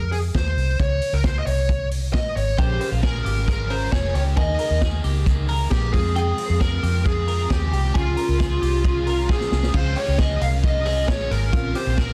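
A smooth, overdriven lead guitar carries the melody up front from the start, over a round, foam-muted fingered bass and a punchy vintage drum kit with dark cymbals, setting a bittersweet, restless mood in this jangly indie pop excerpt at 134 BPM. At 2.6 seconds a bright, twangy twelve-string electric guitar adds arpeggios through phaser and tape echo, while a biting overdriven guitar and warbly, detuned lo-fi synth keys with chorus fill in the background over minor-leaning chords. A drum fill at 9.3 seconds leads into a new section, all set in a moderate club reverb with a dense, heavily limited modern master.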